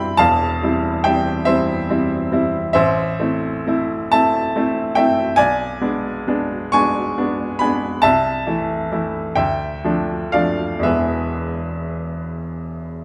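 Close, detailed microphones and a touch of light reverb put a bright, woody upright piano up front, its polished tone carrying every note of this mournful romantic nocturne. Played solo in A minor at a slow, rubato 6/8 of roughly 39-50 dotted-quarter beats per minute, the piano spans from deep E1 to a high C#6. Its melancholic harmony moves from C/E through A minor to D minor at 9.4 s and comes to rest on E at 10.8 s before this 13-second fragment of a longer piece breaks off.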